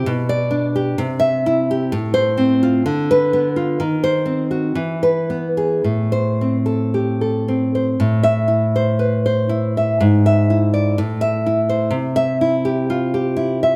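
A romantic solo classical guitar piece, intimate and passionate, heard in a short excerpt cut from a longer work. A fingerpicked nylon-string guitar sits up front with a warm, acoustic tone, moving freely in rubato through G/B, C, F/A, Bdim/D and D#m6 before arriving on E and then A minor at 5.9 s. A new section begins at 8.0 s, passing through E7/G# and A minor to C, and the guitar rings within a moderate recital-hall reverb.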